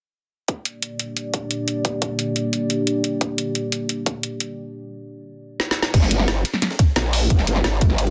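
A detuned, moody pad opens on a G minor chord at 0.5 s, its sustained chords softened by lush chorus and ducked by sidechain pumping, while a tight electronic kick and a layered kit of woody snare, metallic hats and crash cymbal sit up front beside it. This fragment of a longer dark, technical drum and bass piece feels mechanical and tense, driven by a straight, fast groove with little reverb and a dense, heavily limited master. A break arrives at 4.6 s, capped by a short drum fill just before the drop. At 5.9 s the pad falls away and a growling, wobbling bass takes over in the low register, saturated through tube warmth and thickened with chorus. Underneath, a very quiet, gritty sampler-style breakbeat kit adds ride cymbal and a high-tuned snare as the kick and the layered kit carry on through the drop.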